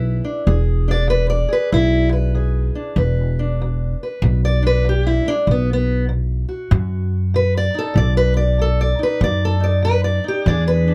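A lightly reverberant acoustic sound puts a dark, parlour-toned fingerpicked steel-string guitar up front, carrying the melody and soloing across the whole 10.9-second excerpt from a longer piece. Beside it, a growly, woody upright bass played pizzicato on steel strings gives a thumpy low end. This rollicking, soulful country blues swings in 4/4, moving from E7 to B at 5.5 seconds.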